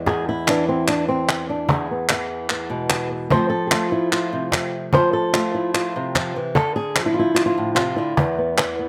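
A thumb-plucked acoustic flamenco guitar opens this fiery, intense flamenco passage up front, spanning E2 to C5 over chords moving from E to F to Dm before landing on E5 at 8.2 seconds, while a woody, close cajon with faint snares and crisp, up-front palmas hand claps enter at 0.1 seconds, the whole captured dry in an open-air setting.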